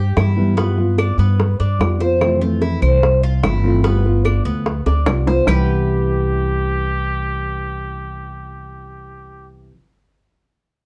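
A straight 4/4 groove at 147 BPM drives this relaxed, danceable Cuban son and guajira in C major, where a bright, metallic tres picks arpeggios on double strings over a thumpy, gut-strung pizzicato upright bass up front and a dark, full-bodied, thumb-plucked nylon-string guitar with audible finger squeak, while tight, high-tuned bongos and dry, woody claves in the background play until 5.6 seconds. After a Cmaj7, G7, Fmaj7, G7 progression and a drum fill, a clear trumpet with light vibrato and scooped notes enters at 5.5 seconds as the harmony returns to Cmaj7, the mix sitting in light reverb with a warm production.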